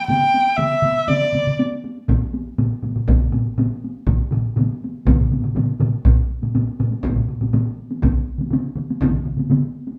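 A dark, nasal erhu opens this ceremonial piece of Japanese traditional taiko music, its bowed line sliding with portamento and expressive vibrato between D5 and G5 before it stops at 1.6 seconds. Heavy-stick taiko ensembles enter at 0.1 seconds, one with a live-room resonance and another heard close, driving a powerful, straight 4/4 pulse at 121 BPM. At 2.1 seconds a solo taiko part struck with hard sticks and a hard-stick ensemble with a small-room sound join up front, thickening the percussion into a forceful wall of drums. The passage moves from its opening section into a second one at 6.1 seconds, and the solo drums fall away at 7.6 seconds. The band plays live in one room, and a wet studio reverb lends the short excerpt, cut from a longer piece, a weighty, resonant presence.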